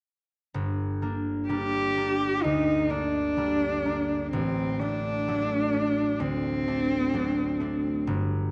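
A dark production with moderate scoring-stage reverb frames this solemn, yearning romantic classical duo in G minor at 64 BPM, a rubato 4/4 fragment of a longer piece in which a bright, ringing, fingerpicked concert harp begins the accompaniment at 0.5 seconds, before a rich, bowed solo cello enters up front at 1.5 seconds with a soft attack, vibrato and expressive portamento, as the harmony moves from G minor to D7 over A at 4.3 seconds.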